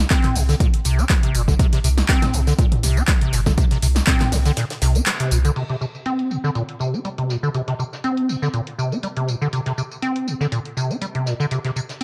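A squelchy, hollow square-wave acid bass sits up front in this trippy, hypnotic acid house track, its resonant riff carrying tape echo, cassette tape color, ensemble chorus and sidechain pumping. A punchy, overdriven analog drum machine runs throughout with crash cymbal, handclaps, hi-hat, snare, tambourine and toms, its parts low-pass filtered, with snare, claps and hats set in a short room, all re-recorded in a large room. An overdriven electronic kick thumps up front until 4.2 seconds, while a deep, round sine sub bass with sidechain pumping holds the low end until 5.5 seconds. Very quiet underneath, a soul drum kit recorded in a tight booth adds hi-hat and a medium-tuned snare with a rolled-off top. From 5.6 seconds a filter sweep moves across the acid bass in the second section, all under light digital ambience, with a slight 16th-note swing in a piece cut from a longer work.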